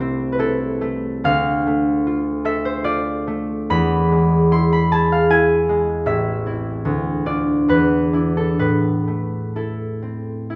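A classical piece for solo concert harp in 3/4, with a wistful, mysterious mood and a flexible rubato feel, heard here in a short excerpt cut from a longer work. The harp sits up front with a bright, ringing, thumb-plucked tone spanning A1 to C6. Its chords move from Am/C through Dm9 and E before settling on Am at 8.6 seconds, bathed in the wet reverb of a recital hall.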